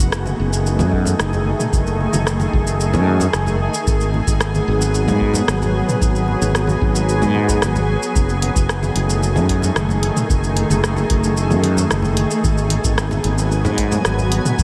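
Sunset chillout with a wistful mood: a shimmering, ethereal ambient pad holds slow-attack chords, alternating between F#m69 and G#m7, with chorus and an octave-up shimmer reverb. Up front, a bright, growly fretless electric bass sits beside a tape-warm deep house drum kit of hi-hat, rim click, shaker and toms, very quiet ringing congas played with hard hands, and a deep analog electronic kick that enters at 0.9 s. The whole mix is dreamy and soaked in a huge ambient reverb, and the passage is cut from a longer piece.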